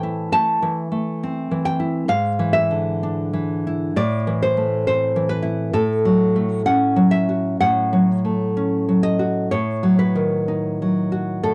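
Nostalgic and sunny, this romantic piece for solo classical guitar moves at a rubato 61-69 BPM in 4/4, cut from a longer work and tuned to A4 = 441 Hz. A single nylon-string guitar, fingerpicked and placed up front, plays throughout its 11.5 seconds with a warm acoustic tone, finger squeaks audible along the way. Its harmony passes from Am through E7/G# and F#m/A to a B7/A at 9.5 seconds, all in light reverb.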